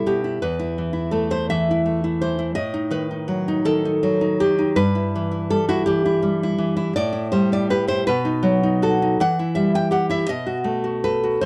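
A lone nylon-string guitar opens the recording, arriving on an A5 over E at 0.4 seconds and setting a wistful, intimate tone for this romantic solo classical piece. The fingerpicked playing moves in a slow, rubato 6/8 at about 55 dotted-quarter beats per minute, ranging from a low E2 up to G5. The harmony drifts through B7 over A and E minor over G before settling into a sequence of A5, B, E minor and B7, the last arriving near 10.3 seconds. Fresh strings give the guitar a deep, acoustic classical tone, placed up front in a dark, warm production with light reverb and tuned to A4 = 442 Hz. The whole passage is a single section of just 11.5 seconds, cut from a longer work.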